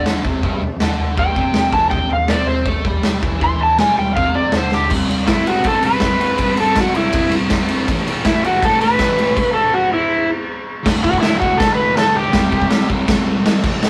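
A straight 4/4 beat from a punchy, gritty garage drum kit with a medium-tuned snare, crashes, ride and toms carries this rowdy, swaggering garage rock excerpt, as a double-tracked, compressed fuzz guitar picks a distorted riff beneath an up-front overdriven slide guitar melody that runs until 12.9 seconds, all in a rough rehearsal-room sound with a drum fill at 4.7 seconds and a full stop from 9.4 to 10.9 seconds.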